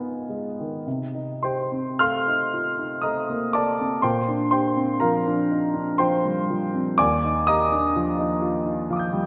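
A warm grand piano carries this short impressionist solo, sitting present and up front with a long sustain that lets each chord ring and blur into the next. The mood is hazy and wistful, set in C minor and moving in a slow, rubato 3/4 that drifts between roughly 46 and 65 BPM. The harmony glides from G#m6 at the start to Cm6 at 0.9 seconds, then to Bb69 and finally Ebmaj9 at 7.0 seconds, colouring the phrase with extended chords. The piano spans a broad register from Eb2 up to G6, and a wet scoring-stage reverb surrounds it with a spacious, lingering tail. Cut from a longer piece, the clip lasts just over nine seconds and feels like a fragment of a gentle, dreamlike reverie.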